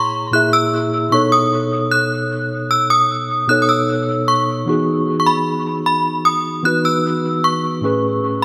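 A straight 4/4 pulse at a slow 76 BPM carries this smooth, tender R&B passage in E major, cut from a longer piece and tuned slightly below standard pitch. A mellow tine electric piano provides the accompaniment from 0.0 to 8.4 seconds, clean and up front, as if heard through built-in speakers, spanning A2 to E5. Above it, a synth chime carries the melody between B5 and F#6, its FM tone chiming and inharmonic with a fast attack and ringing decay, thickened by ensemble chorus. Both parts trail dub echo, giving the mix an echo-heavy sheen inside a light reverb. The harmony moves from A#m7b5 to B7, settles on Emaj9 at 4.7 seconds, and turns to Amaj7 near the close.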